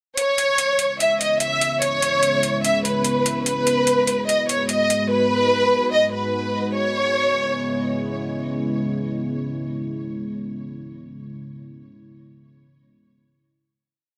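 Melancholic and hard-hitting, this short, complete hip hop piece in a trap style sits at 146 BPM with a half-time feel in C# minor. A lush, expressive studio violin section carries the melody up front, its bowed ensemble tone shimmering with vibrato and a touch of delay, repeating like a sampled loop over C#m7 and G#m7 until 7.9 seconds. Beneath it, a deep, moody ambient pad enters at 1.0 second, holding sustained chords built from detuned sawtooth and sine layers with a sub octave, softened by chorus and its own reverb and lingering on a final C#m7 until 10.8 seconds. Metallic electronic hi-hats drive the half-time trap beat through most of the opening breakdown, overdriven and gritty with a vintage sampler crunch and a small-room character, before dropping out at 5.0 seconds. A moderate studio reverb ties the parts together.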